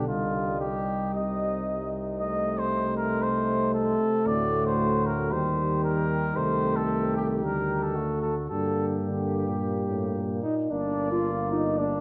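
A soft-attacked, mellow trumpet carries the melody up front in this solemn, heroic classical brass quintet, cut from a longer piece and moving with a rubato feel in 4/4. Beneath it, a distant, punchy flugelhorn adds a second line in the background, a clear, close-miked trombone plays accompaniment from the start, a smooth-topped French horn joins it in that role at 0.1 s, and a tuba with light vibrato anchors the bass, as the chords pass from Cm to a closing Gm at 8.5 s. The ensemble sits in a wet recital-hall reverb, with the worn, warbling pitch drift and dulled top of old cassette tape.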